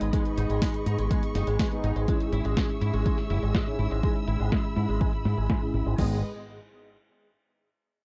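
An up-front fingered electric bass anchors this bittersweet, nostalgic italo disco fragment, its envelope filter giving it a bright, direct-and-amped bite, while an overdriven, punchy analog kick sits just as prominently from 0.1 s. A sampler-style 12-bit drum machine adds crash, hi-hat and a medium-tuned snare, tape-softened and re-recorded in a small room, with low-pass filtering and a filter sweep on its kit. Fat, sawtooth-edged analog synth brass fires bold, dark stabs with chorus, vibrato, tape echo and a filter sweep, over a bowed studio string section holding smooth, expressive sustained chords with vibrato and portamento. A clean, twangy electric guitar, picked and compressed, weaves arpeggios through ensemble chorus, tape echo, a low-pass filter and its own filter sweep. The harmony moves from G#m to C#m at 2.1 s and returns to G#m at 6.0 s, all captured in a dry, close, 1970s-style studio sound in this brief cut from a longer piece.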